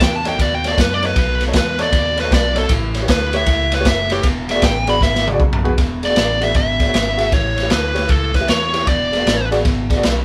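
Electric blues shuffle at 156 BPM in E mixolydian, swaggering and laid-back, with a swung feel that moves through B7, A7 and E7 in this short cut from a longer piece, played by a band live in one room with light reverb. A smooth, overdriven lead guitar sits up front and solos for the first 5.8 seconds, while a crunchy, saturated breakbeat kit with dark cymbals and a tight kick drops a fill at 5.0 seconds. Beneath them, a twangy, slightly broken-up guitar riff through a small old amp, a round, foam-muted fingered bass and a warm grand piano with short sustain fill out the groove.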